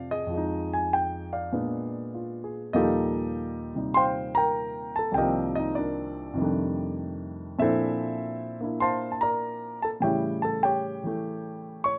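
A concert grand piano carries this relaxed, sophisticated solo jazz fragment on its own, sounding up front with a deep bass, short sustain and a warm tone across a range from C2 to C#6. The playing swings in 4/4 at 99 BPM, moving through rich harmony such as Fm7, Bb7b9, Ebadd9, Cm11 and F13, with a new passage opening at 2.7 seconds and the clip closing on A7 around 10.0 seconds. A moderate studio reverb surrounds the instrument in a rough home demo mix, and the 12-second clip is cut from a longer piece.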